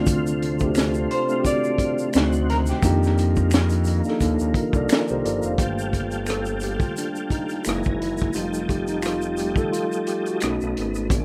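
A loosely swung, crunchy breakbeat groove with a punchy kick and high-tuned snare, backed by a faint tube shaker and finger snaps, drives this soulful, smooth neo-soul R&B clip, where a sawtooth-edged, detuned synth bass and a mellow tine electric piano sit up front over sustained tonewheel organ chords swirling through a fast rotary speaker, a twangy, slightly broken-up electric guitar melody drifts in with plate reverb and tape echo from 1.1 to 3.7 seconds, and the electric piano takes a solo from 5.6 seconds in a rough, lightly reverberant home-demo mix.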